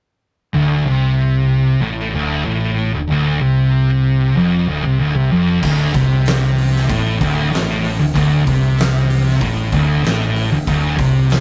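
Sludgy and brooding, this stoner and doom metal excerpt in D minor moves at 95 BPM in a straight 4/4, with two thick fuzz guitars picking a low riff from 0.5 seconds, one up front and the other darker in the background, over a bright, overdriven fingered bass that growls beneath them. At 5.6 seconds the harmony shifts from Dm to a D5 power chord as an oversized low-tuned drum kit arrives, its punchy kick, fat snare, dark cymbals and hi-hat saturated and gritty in a pumping stone room. Light reverb and tube saturation give the whole thing a rough rehearsal-room feel.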